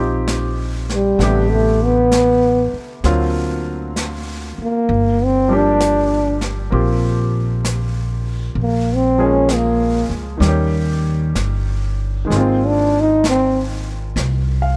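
Lightly reverberant, this tender, late-night jazz ballad excerpt in Eb major moves at a slow 65 BPM with a swung feel. An up-front, breathy trombone enters at 0.9 s with vibrato and scooped notes, carrying the solo melody over a clear, short-sustained baby grand piano, a woody, thumpy pizzicato upright bass, and an airy, polished brush kit on snare and hi-hat that joins at 0.3 s, through chords that drift from Ebmaj9 to a closing Ab69.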